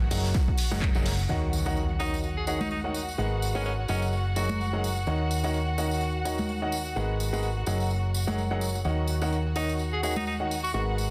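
A round, dark hollow-body electric bass, veiled con sordino violins holding sustained chords and a clear baby grand piano riff with delay open this soulful, bittersweet piano house excerpt at 127 BPM in Eb minor, all three pumping with sidechain. A punchy analog kick, drum-machine handclaps and hi-hat, and an airy snare with tambourine mark the first second, the kick dropping away at 0.9 s and the rest at 1.2 s, while close, dry congas and tambourine carry on and an electronic impact sounds in the background from 1.3 s. A bright, vintage tenor saxophone with scooped notes and vibrato plays a jazz-style solo line over Ebm7, Abm9 and Gb69 chords, returning at 9.6 s in a dense, heavily limited mix with light small-room reverb.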